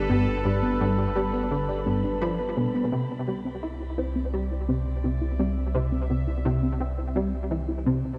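A steady, straight 4/4 pulse carries this luminous, expansive passage of sequencer-driven ambient space music, where a punchy, funky analog bass riff sits up front with ensemble chorus, delay and shimmer reverb, a deep sine sub bass with tube saturation anchors the low end, soft round pluck arpeggios that are gentle and dark gain a filter sweep from 2.9 s as the harmony moves from G to Cadd9, a bright, evolving sawtooth pad sustains chords under chorus and shimmer reverb, and an airy, wind-like noise texture breathes faintly in the background until 2.9 s, all within a wet echo-chamber sound whose highs are rolled off above about 10 kHz.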